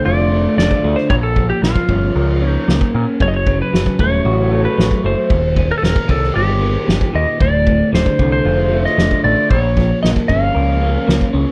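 A straight 4/4 pulse from a soft-mallet drum kit, with punchy kick, fat snare and dark ride cymbal sounding distant and roomy, drives this brooding, mysterious psychedelic rock passage cut from a longer piece. A growling, overdriven bass sits up front with a round tone, while an electric guitar through a small old amp plays a slightly broken-up, phased riff. Over the shifting chords, a clean lap steel carries the melody in fingerpicked slide lines with volume swells and slapback echo, in a dry mix with little reverb.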